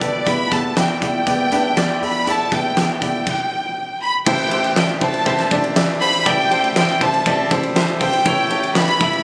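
Dramatic and driving, this piano-driven pop excerpt in A minor moves at 120 BPM in a straight 4/4, with a bright, lush violin section carrying the melody up front over a clear, polished concert grand piano, a round, deep analog bass and a huge arena drum kit with a fat snare, punchy kick and bright cymbals. A fingerpicked steel-string acoustic guitar riff sits in the background from 0.3 seconds, and after a stop from 3.3 to 4.3 seconds the music shifts from E minor to A minor seventh, reaching A7 at 8.3 seconds. Heard as if captured on a phone in a club, the sound carries light reverb and small-room ambience.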